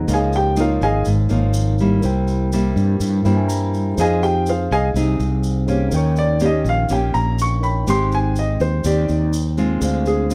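Bossa nova in C minor at 123 BPM, wistful and intimate, where a warm, up-front baby grand piano carries the melody with plate reverb, pausing after its opening phrase and returning at 4.0 s, over fingerpicked nylon-string guitar with audible finger squeak, a round, dark fretless electric bass, a clean tine electric piano that adds a fill around 3.0 s, and a grainy, distant tube shaker, all in a dark, lightly reverberant production cut from a longer piece.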